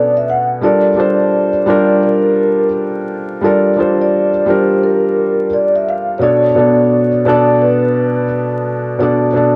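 A swung sixteenth-note hip hop groove in 4/4 carries this brief, reflective and hazy excerpt, with a felt-muted upright piano sitting up front, soft and intimate, its thin felt and audible action noise giving the accompaniment a close, homemade character as it moves from Bm7 to Gm7 and back to Bm7 at 6.2 seconds. Over it, a vibraphone played with soft mallets carries the melody, metallic and ringing with a fast motor vibrato yet still mellow. Both parts are softened by a low-pass filter, cassette tape coloring and plate reverb, and the whole piece sits in a wet small room with vinyl crackle and the worn feel of a home cassette recording.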